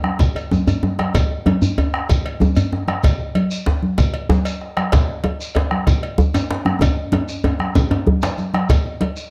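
A deep, dark bombo sits up front in this driving, earthy West African traditional drum ensemble in 12/8, joined by a tight, cracking djembe and a second deep, up-front djembe, ringing medium-tuned congas, a metallic cowbell and a grainy, mellow shekere in the distance, with drum fills at 0.4 and 6.8 seconds in this short, dry, close-miked passage cut from a longer piece.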